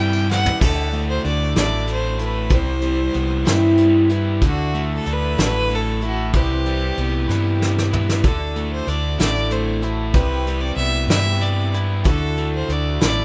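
Folk rock and heartland rock in a nostalgic, hopeful mood at 63 BPM in 6/8 and D mixolydian, this passage from a longer piece sets a clear, focused bowed fiddle melody with light vibrato and digital delay over a bright, shimmering octave-doubled twelve-string acoustic guitar, a crunchy double-tracked overdriven guitar riff, a round, dark fingered electric bass and an up-front brush drum kit with a fat snare and dark cymbals that enters with a fill at 0.3 s, while a smooth tonewheel organ on slow rotary speaker and a jingly tambourine are heard only within the first 0.6 s, all over a sway between Cmaj7 and Dadd9 with studio reverb in a rough home-demo mix.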